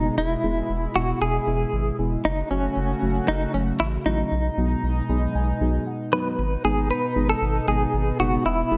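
A straight 4/4 pulse at 116 BPM drives this melancholic synth-pop excerpt, where a clean, direct-recorded electric guitar carries the picked, compressed melody up front with tremolo, over a round, nasal analog bass. Muted, felt-like synth keys with chorus add an intimate, decaying accompaniment, while a shimmering, retro pulse-width pad holds slow-attack chords through a progression of E, F#m, B6 and G#m. The keys step forward with a fill from 4.8 s, a brief break arrives at 5.9 s, and a new section begins at 6.4 s, all in a light reverb.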